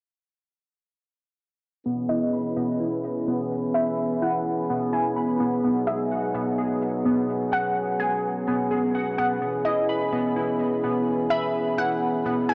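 Hip hop in C# minor at 127 BPM with a half-time feel, this hazy, melancholic passage is cut from a longer piece. A French horn section enters at 1.9 seconds, holding soft-edged chords with light vibrato and a classical ensemble character, sitting up front under a low-pass filter. Alongside it, warbly lo-fi synth keys play arpeggios, their detuned, nostalgic tone carrying a sub octave, a ring-modulated edge and a filter sweep, with chorus and tape echo coloring each decaying note. A glassy wavetable pluck joins at 2.1 seconds with a crystalline melody, its fast attack and noise layer softened by chorus, a low-pass filter and tape echo. The harmony moves from C#m7 to G#m7 at 5.6 seconds and back to C#m7 at 9.4 seconds, all set in a small room with light reverb and a dry, gritty hardware sound.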